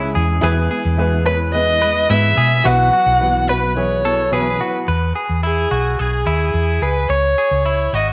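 Breezy and bright, this indie pop excerpt moves at 108 BPM in E major, with a warm semi-hollow electric guitar under ensemble chorus and a woody upright piano sharing the accompaniment until 4.9 s, while a twangy, direct-recorded clean guitar plays picked arpeggios through spring reverb and slapback echo. A round, up-front short-scale hollow-body bass anchors the low end, and from 1.3 s a dark, smooth bowed violin with vibrato carries the melody, touched by slapback echo. The parts sit in a moderate echo chamber, and the chords run from E to Bsus4, then E to C#m.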